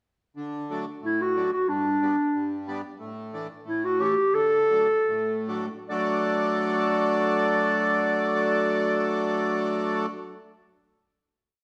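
In a straight 2/4 at 70-92 BPM, this jolly, festive alpine folk dance piece in D major opens with a reedy, full accordion playing off-beat triad chords at 0.4 s, with a mellow clarinet entering at 1.1 s to carry a song-like, motif-based melody in a classical style. After the harmony moves from D to G, the tempo slows between 3.0 and 5.9 s as the chords pass through a suspended A and A back home to D, and the piece closes on a final chord from 5.9 s. Both parts sit up front, the accordion dark and smooth, while the clarinet sounds distant and roomy in a wet recital-hall reverb.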